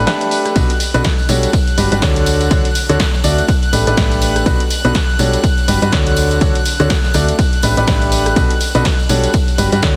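A clear, intimate baby grand piano leads this soulful, bittersweet piano house passage, its riff sitting up front with audible action noise and a touch of tape echo. Beneath it, a round, dark FM bass with a fast, decaying attack anchors the low end, while a soft-attack violin section holds floating, bowed sul tasto chords in the background. A punchy analog drum machine supplies hi-hat, ride, rim click, snare and tambourine in a swung groove, joined at 0.6 seconds by a layered, tape-warm electronic kick and a very quiet, live-room tambourine. The harmony cycles through A9sus4, Bm7, Gmaj7 and Dmaj7, and the piano, bass and strings all pump against the sidechain. Light studio reverb and heavy multiband compression give the piece a dense, radio-ready sound, and it is cut from a longer work.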